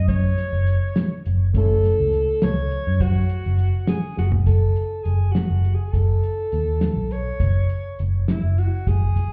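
A clear, present alto saxophone carries the melody with light vibrato and a soft, subtoned attack, bathed in plate reverb and tape echo. Beneath it, a round, foam-muted picked electric bass pushes up front, a cloth-damped, thuddy drum kit with a fat snare drives the tense 5/8 groove, and a dark hollow-body jazz guitar sits in the background until 4.4 seconds. All of it comes through as a short progressive instrumental excerpt, heard muffled through a wall in club reverb.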